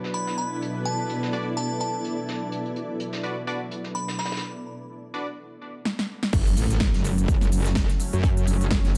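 Bass house with a bouncy, gritty mood and a light swing, heard here as a short cut from a longer piece. It opens on Bm with an evolving, airy sawtooth pad and a blurred, cloudy granular pad, both pumping against the sidechain, while a soft brush drum kit plays hi-hat and snare in a studio room. A glassy, crystalline FM bell carries the melody up front with chorus and tape echo until 4.3 seconds, and a nasal, band-passed chord stab with detuned sawtooth tone and tape echo joins from 1.3 seconds. After a break, a big-room dance drum kit enters with a fill at 5.9 seconds, its punchy snare, crisp hats, shaker and crash driven by overdrive. The drop lands at 6.3 seconds on F#m with a distorted, metallic wobble bass placed up front, an overdriven electronic kick and a very quiet electronic impact, all set in light digital ambience.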